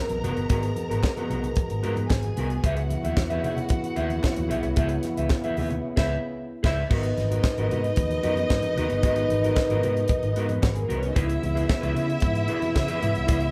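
Glamorous and danceable, this short disco passage in G# minor moves at 112 BPM, with a tight, polished funk drum kit up front, its high-tuned snare and tight kick sitting alongside a punchy fingered electric bass while twangy, slightly broken-up electric guitar with spring reverb fills in the accompaniment. Lush, bowed studio strings carry a smooth second line over dark, distant French horn chords, very quiet congas add texture throughout, and hollow group handclaps join from 1.0 to 12.9 seconds. The band plays live in a large studio room, hitting a shared accent at 5.8 seconds before the harmony returns from C#m7 to G#m9 at 6.9 seconds.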